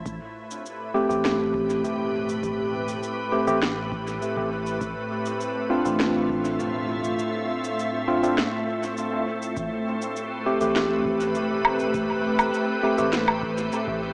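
A soft, organ-like pad opens this hazy ambient dub fragment with bright, warbling sustained chords thickened by ensemble chorus, over a round, mellow sub bass and a deep, tape-warm electronic kick sitting in the background. Up front, a woody electronic snare, shaker and woodblock carry dub echo, while a clean tine electric piano plays stabs from 0.9 seconds, its filter sweeping until 9.6 seconds as the chords move from Am7 to Dm7 and back. A wet spring reverb and a small-speaker sound lend the whole a deep haze.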